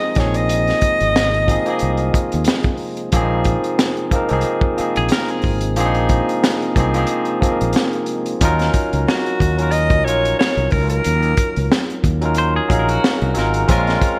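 Sultry and smooth, this R&B and neo-soul excerpt in Eb dorian moves at 91 BPM with a lightly swung 16th feel, as a barky tine electric piano and a crunchy, gritty breakbeat kit with a punchy kick, high-tuned snare and gated reverb carry the groove alongside a punchy fretless bass, while a very quiet tonewheel organ with slow rotary and key click holds sustained chords until 8.4 seconds, a jazz-style alto saxophone with light vibrato, scooped notes and digital delay sings brief phrases at the start and again at 9.1 seconds, and a clean, compressed semi-hollow guitar adds a second line at 5.0 seconds, all in a bright 1980s-style digital production with light reverb.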